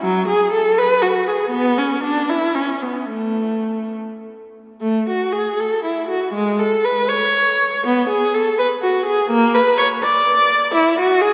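A lilting 6/8 pulse, stretched and relaxed with rubato, gives this brief passage from a baroque-style suite movement a flowing, dance-like character. A single bowed viola carries it alone from start to finish, close and up front, its rich tone focused and colored with vibrato, with a smooth top end. A long, wet church reverb surrounds the playing as the opening phrase gives way to a new section at 4.8 seconds.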